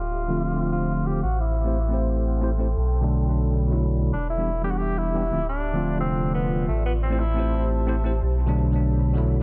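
Light digital ambience and an echo-heavy, low-pass-filtered mix give this lush, melancholic drum and bass excerpt a hazy, submerged sound, with a filter sweep running through its full 9.4 seconds. A breathy tenor saxophone carries the melody in a clear, pop-style solo with vibrato, its notes trailed by analog delay before it stops at 7.7 seconds. Up front, a bell-like tine electric piano enters at 0.3 seconds with bright, clean accompaniment through analog delay, its filter sweeping across the passage. Beneath it sits a deep, full sub bass with octave, rounded by tube saturation and kept mellow and sustained. In the background, an ethereal, airy pad holds slow-attack chords softened by ensemble chorus and built-in reverb, moving through minor seventh chords from Dm7 to Am7, Bm7 and Em7.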